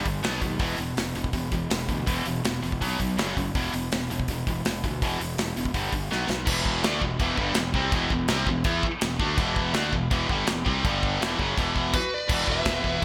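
A double-tracked, bright high-gain guitar riff and a growly, fuzz-driven fingered bass open this epic, relentless heavy metal excerpt in E minor at 164 BPM, joined at once by an up-front, airy studio kit with a punchy kick, china and crash cymbals, and gated reverb. After a drum fill, a tighter distorted riff guitar enters in the background at 6.5 seconds, and a dark high-gain lead melody arrives at 11.9 seconds, with a second lead line carrying digital delay behind it. The sound has a 1980s-style digital production with light studio reverb.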